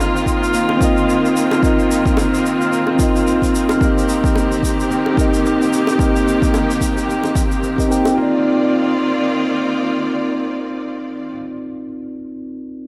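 Sunset chillout in C minor at 110 BPM, swung 16ths giving a smooth, warm feel in 4/4, heard as an excerpt cut from a longer piece. A mellow tine electric piano sits up front with accompaniment through a low-pass filter and tape echo, while a lush, bowed studio string section holds sustained chords with vibrato, a clear, focused sound and a smooth top. Further back, a ringing, fingerpicked concert harp plays arpeggios through its own low-pass filter and tape echo, with a filter sweep running on it until 8.2 seconds. The rhythm comes from a punchy, overdriven electronic kick drum up front, a natural brushed shaker, and tight, high-tuned bongos kept very quiet. The harmony moves from F7sus4 to Eb6 and settles on Cm11 at 8.2 seconds, just as the kick, bongos and then shaker drop out, leaving the keys, strings and harp to carry the close. An echo chamber reverb and an echo-heavy mix give a soft, spacious glow, with a faint mains hum underneath.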